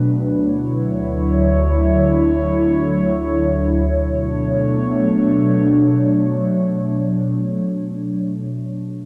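Hip hop in free time, hazy and melancholic, this short cut from a longer piece features a solo warbly tape-like pad, detuned and nostalgic with a slow attack and long release, sitting up front through chorus, phaser and digital delay as it moves from Dmaj9 to Bm9 at 3.9 seconds inside a huge ambient reverb and a dark production.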